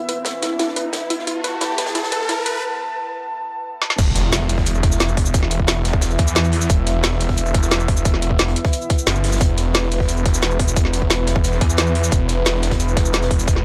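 Set in light reverb and a digital ambience, this excerpt of dark, technical drum and bass feels tense and futuristic. A moody analog pad with sidechain pumping and a lo-fi, warbling pluck arpeggio with chorus and delay open the build-up alongside a riser. The pluck stops at 2.5 seconds, and a brief break follows. At 4.0 seconds an impact lands the drop, where a snarling, detuned saw bass with tube saturation growls under a tight electronic kick. Above them, an up-front drum and bass kit, playing since the opening moments, adds a woody snare, metallic hats, cabasa and crash, with a gritty, very quiet breakbeat kit, also present from the start, layered far beneath.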